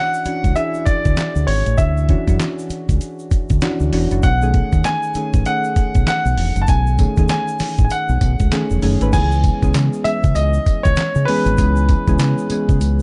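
New jack swing R&B at 98 BPM with a swung 16th-note feel, flirty and bouncy, in a dark, dry production cut from a longer piece. A clear, intimate concert grand carries the melody over soft, mellow synth keys with chorus, moving from Dmaj9 to B13 and then C#m7 at 9.1 seconds, while a round, punchy fingered electric bass and a gritty, compressed sampler-style drum kit sit up front from 0.3 seconds, the kit adding a thumpy kick, fat snare, hi-hat, handclaps, tambourine and crash cymbal. A grainy egg shaker sits in the background.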